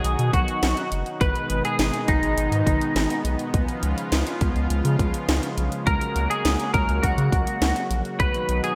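A straight 4/4 synth-pop groove at 103 BPM in B major, wistful yet upbeat, sets a punchy, up-front house drum kit with a cracking snare and gated reverb under a deep, round analog bass, a thick, warbling detuned unison pad with chorus holding sustained chords, and a twangy, clean electric guitar melody carried by analog chorus and delay, moving from B through G#m and C#7 to F#add9/C# and back to B, all set in a lush hall with bright 1980s-style digital production in this excerpt cut from a longer piece.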